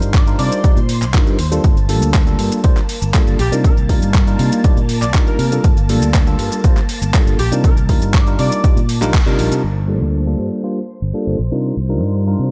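Nostalgic and funky, this filtered disco house excerpt in G minor moves at 120 BPM in a straight 4/4, cycling between Cm11 and Gm9 in a dark, dry production. A punchy, up-front electronic kick pairs with a gritty, compressed sampler-style kit of handclaps, hi-hat and shaker, while a growly fingered electric bass, a barky, bell-like tine electric piano with phaser and 12-bit grit, and a swirling string machine in the background all pump to the sidechain beneath a low-pass filter. A smooth-topped horn section with light vibrato and tape echo carries the melody until 8.8 seconds, the band hits an accent at 9.1 seconds, and from 9.6 seconds the sampler kit falls away as a filter sweep runs to the end while the bass, piano and strings play on.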